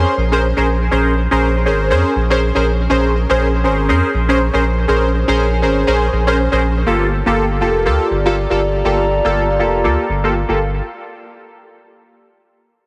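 Up-front analog keys lead this moody, hypnotic deep house fragment with detuned sawtooth stabs, colored by chorus, phaser, a low-pass filter and tape echo. Beneath them, a round analog bass holds the low end with a dark, sine-like plucked tone. At 6.9 seconds a filter sweep begins on the bass as the harmony moves from Bbm9 to Gm9. At 7.6 seconds a warbling, lo-fi pad enters high above, its nostalgic, ring-modulated texture softened by chorus and its own reverb. The groove sits in 4/4 with a swung sixteenth-note feel, framed by a lush hall reverb and heavy compression that gives the mix a squeezed, radio-like sound.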